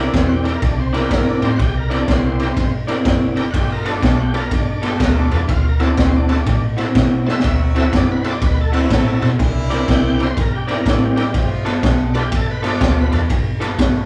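Gritty and rollicking, this electric blues shuffle swings at 123 BPM in 4/4, cut from a longer piece, with a crunchy breakbeat kit up front (punchy kick, high-tuned snare and dark ride cymbal) driving a round, foam-muted fingered bass and a slightly broken-up, lo-fi guitar riff through a small old amp. A shouting tonewheel organ, lightly overdriven with key click, slow rotary speaker and chorus vibrato, fills out the accompaniment, while a jazz-style horn section adds octave-doubled stabs with light vibrato from the background. The chords move through C9, G9 and D9, a drum fill lands at 7.2 seconds, and the band sounds as if playing live in one small room.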